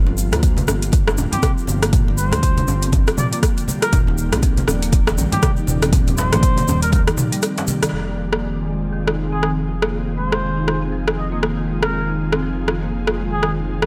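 Spiritual and warm, this afro house cut rides a swung groove of an overdriven, up-front deep house kit with metallic hi-hats, rim click and toms, a deep layered electronic kick that drops out at 7.0 seconds, and background congas, hard-handed djembe and a grainy egg shaker that fall away around 7.9 seconds after a short break and band accent. Beneath it, a smooth, evolving synth bass and woody marimba arpeggios pump against the kick, the marimba filtered and trailed by delay, while an ethereal, airy pad with a warbling chorus holds sustained chords. A soft, veiled cup-muted trumpet sings a jazz-style solo melody with vibrato and delay over the light small-room ambience.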